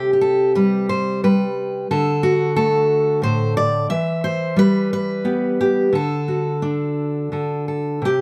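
Pastoral and nostalgic, this brief folk fragment from a longer piece features a solo fingerpicked steel-string dreadnought acoustic guitar, full-bodied and warm with fresh strings, placed up front in light reverb as it moves in a rubato 3/4 at around 89 BPM through C5, D, Em and back to D, spanning A2 to E5 over its 8.2 seconds.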